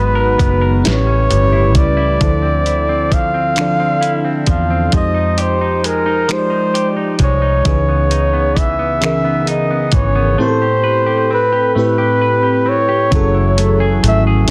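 A warm, up-front flugelhorn carries the melody in this slow six-eight R&B piece, its soft-attack notes scooped and shaded with vibrato in a jazz style, trailed by a slapback echo. Beneath it, a lush, dreamy FM electric piano with a soft pad layer supplies warbling, detuned chords through a chorus effect, while a bright, clean semi-hollow electric guitar adds a compressed, picked second line. A dark, round, foam-muted electric bass sits up front alongside a gritty, tape-warm sampler-style drum kit, which enters at 0.4 seconds with finger snaps, hi-hat, a thumpy kick and a medium-tuned snare. A very quiet tonewheel organ holds sustained chords through a slow rotary speaker only at the opening and again from 13.1 seconds, framing a middle stretch of lush ninth chords. The mood is late-night and yearning, with light reverb and a dense, heavily limited modern master, and the clip is cut from a longer piece.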